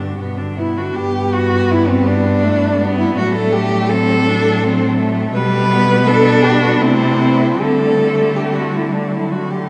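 In a rubato 3/4 at 81 BPM, this tender, serene classical excerpt in G major sets four bowed cellos in a vast cathedral reverb, with an expressive, up-front melody cello gliding between C4 and B4 over a smooth, even second line, a warm accompaniment and a distant bass cello with portamento, as the harmony moves from G through Am6 to Dsus4 before resolving on D at 9.1 seconds.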